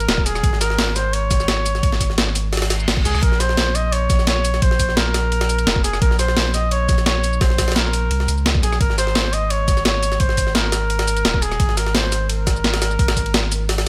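A dry mix carries this soulful, dreamy liquid drum and bass excerpt, led by a distant, roomy flugelhorn solo with vibrato and digital delay, over a round, deep sine sub bass that sits up front. A gritty, compressed breakbeat kit with a medium-tuned snare, rim click and shaker layers with a pitched-up jungle kit whose high-tuned snare, hats and ride are thinned by high-pass filtering, while a knocking, tape-warmed electronic kick enters at 0.2 seconds. An electronic reverse cymbal sounds in the background from 2.7 to 3.2 seconds, leading into the move from Absus4 to Bbmadd9 before the harmony settles on Absus2.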